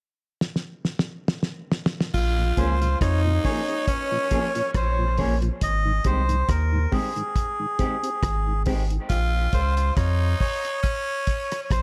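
This hypnotic, heavy dub reggae excerpt opens with a cloth-damped drum kit playing a fill at 0.4 s, its thuddy, dry sound marked by a fat snare, tight kick and dark cymbals sitting up front. At 2.1 s the groove settles in at a slow 69 BPM with a lightly swung 16th feel in Bb dorian, as a round, deep sub bass arrives up front alongside a growling tenor saxophone. The sax plays a raspy, gritty second line, close-miked and high-passed, trailing dub echo. A reedy, nasal melodica soon carries the melody, its breathy tone also thrown into dub echo. Behind them, a mellow tonewheel organ with chorus vibrato and a slow rotary speaker sits in the background, while a clean, fingered electric guitar adds echoed accompaniment before dropping out ahead of the close. The harmony moves from Bbm7 to Abmaj7 and back, and a filter sweep runs from 5.6 s to the end, all within a small room ambience.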